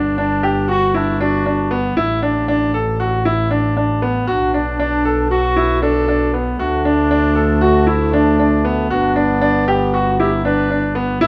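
A light reverb surrounds this short passage of contemporary chamber music, a shimmering, hopeful fragment cut from a longer piece in 9/8 at 234 eighth-note beats per minute, tuned to A4 = 441 Hz. An up-front, brilliant concert grand piano plays arpeggios with long sustain over a rich, bowed double bass played sul tasto with a soft attack. A mellow, distant solo clarinet carries the melody in classical style through chords moving from Gmaj7 with the third omitted through Asus4, Bm7 and D back to Gmaj7, with a clear solo French horn adding a second line from 6.6 s.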